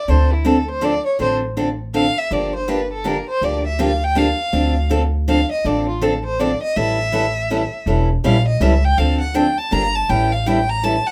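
A bowed violin opens at 0.0 seconds, carrying the melody of this bittersweet, virtuosic excerpt of jazz manouche, an acoustic string swing in D minor at 162 BPM in a swung 3/4. The violin is rich, smooth and even, with vibrato from a single player, and it takes a solo across the whole passage. At 0.1 seconds a picked steel-string acoustic guitar joins as accompaniment, bright with fresh strings, concert-toned, and touched by finger squeak. An upright bass enters at the same moment, its pizzicato gut strings sounding woody and thumpy. All three parts sit up front in a small room with moderate reverb, over chords that move from Dm7 to Gm7 and A7b9 before returning to Dm7 and closing on A7.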